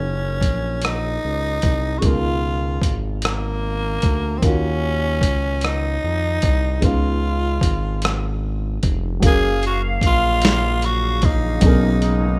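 A rough home-demo mix with studio reverb frames this tender, slow six-eight R&B fragment, where a raspy, edgy tenor saxophone with slapback echo carries the melody up front over a dark, worn grand piano murmuring in the background with audible action noise, a smooth gliding sawtooth synth bass with portamento, and a dusty, gritty sampler-style drum kit with a thumpy kick and rim clicks, before a tight woodwind section with light vibrato adds sustained chords from 9.2 seconds.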